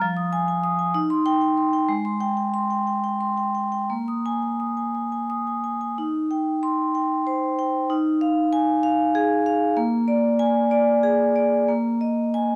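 A solo vibraphone, struck with medium hard mallets and played with the motor off, rings out metallic and up front in this flowing, warm excerpt of a contemporary classical piece in Eb major, moving in a rubato 6/8 at roughly 56-65 BPM through chords such as Fm7, Abmaj7 and Bb7sus4, with a new section beginning at 6.0 s, all captured by close, detailed microphones in light reverb.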